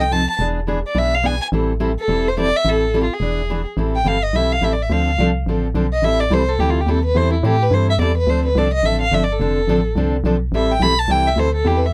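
Violin, picked steel-string acoustic guitar and an organ-like FM bass all sound together from the first moment in this brisk acoustic string swing piece in the gypsy-jazz manner, set in A minor at 213 BPM with a lively swung eighth-note feel. The bowed violin carries the melody with a warm, expressive tone, soft attack, vibrato and portamento, and it moves into a virtuosic solo at 3.8 seconds that runs to the close at 11.9 seconds. Beneath it, the dreadnought guitar provides accompaniment with a warm, fresh-stringed acoustic sound, moving through minor-seventh harmony around A minor and D minor with dominant E7 turns. The bass is hollow and dark, with a fast, percussive attack that decays. The recording is close and detailed with little reverb, keeping the three instruments up front in a dry, intimate space. This is a short, swinging cut from a longer piece.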